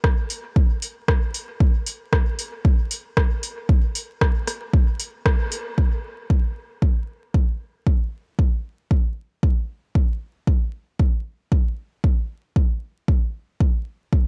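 A deep, overdriven, layered electronic kick drum sits up front through this nocturnal, hazy techno excerpt, joined until 5.6 seconds by a soft vintage analog rhythm box whose metallic hi-hats and rim clicks carry a light sixteenth-note swing, with a full-band accent at 5.3 seconds just before the kick carries on alone in a dry, close mix dusted with vinyl crackle.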